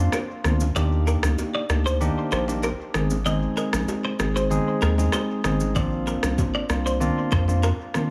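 A bell-like tine electric piano with dub echo and a round, deep analog bass open this breezy, romantic afrobeats fragment at 96 BPM in Eb major, joined at once by a twangy, compressed clean guitar riff carrying ensemble chorus and dub echo, an electronic afro-pop kit with a deep kick, rim click and shaker, and ringing vintage bongos and congas in the background, all in an echo-heavy mix with small room ambience as a break runs until 5.8 seconds over Bbadd9, Ebmaj7 and Ab.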